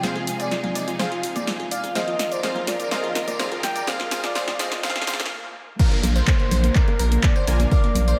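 An overdriven electronic kick drum, deep and up front, lands at 5.8 seconds to open the drop in this euphoric, hopeful progressive house excerpt at 125 BPM in 4/4, set in B-flat mixolydian. A round analog bass joins it, dark and sustained with a fast attack, riding on sidechain pumping as the harmony settles onto Bb after the Fm and Ebsus2 of the build-up. Before that, a smooth, expressive sawtooth lead sings the melody with vibrato, chorus and tape echo while a filter sweep opens it up. Glassy, crystalline wavetable plucks spin arpeggios, and punchy, airy supersaw stabs sit in the background beside a lush, distant symphonic string section holding bowed chords. A house kit with a punchy snare, claps, hi-hat, shaker and crash plays a fill, with bright congas and bongos tucked behind it and a very quiet riser and downlifter entering at 1.7 seconds. A brief stop just before the drop heightens its impact, and the whole mix sits in light reverb with a high-pass filter.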